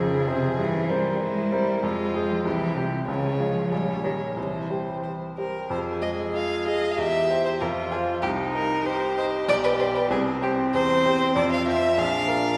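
Urgent and stormy, this quick classical-period movement for piano trio moves at 96 BPM in 2/4 with a rubato feel, its harmony circling F minor through C, D-flat and diminished chords before a new section arrives at 5.7 seconds. A rich, vibrato-laden violin carries the melody up front in one smooth, even bowed line, while a close cello adds a second voice and a clear, intimate baby grand piano accompanies with long sustain and audible action noise. A wet concert hall reverb with a 2.4-second decay surrounds the trio in this excerpt cut from a longer piece.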